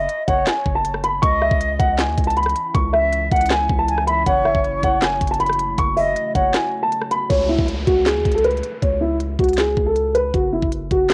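A cassette-worn, lightly reverberant home recording carries this menacing trap excerpt at 158 BPM in a half-time feel, where a dark, boxy grand piano leads up front over a deep sine 808, knocking electronic drums with sharp snare, crisp hats, handclaps and rim clicks, an airy, distant flute second line with vibrato and analog delay until 6.5 s, a moody detuned sawtooth pad with chorus sitting in the background from 2.2 s, and an electronic downlifter arriving at 7.3 s as the chords drop away.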